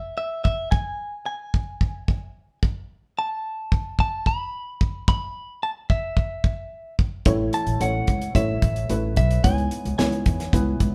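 Piano-driven pop with an anthemic, hopeful mood, opening on a clean, compressed electric guitar melody recorded direct, joined at 0.5 seconds by a dry, up-front 70s drum kit with a fat snare and tight kick, before a worn, slightly detuned upright piano with short sustain and a dark, thumpy pizzicato upright bass on woody gut strings enter together at 7.3 seconds over A and C#m7 chords, the band heard playing live in one room with moderate studio reverb.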